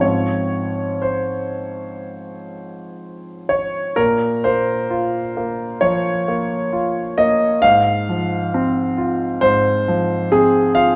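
Played rubato in 4/4 at roughly 59-69 BPM, this brief fragment of neoclassical minimalist piano in Bb minor feels intimate and melancholic. A solo concert grand, close and up front with deep bass and a natural tone, spans Ab2 to F5, and its audible action noise adds to the sense of nearness. Light reverb surrounds the harmony as it moves from Fm/Ab to Bbm at 4.0 seconds, then back to Fm/Ab at 7.6 seconds.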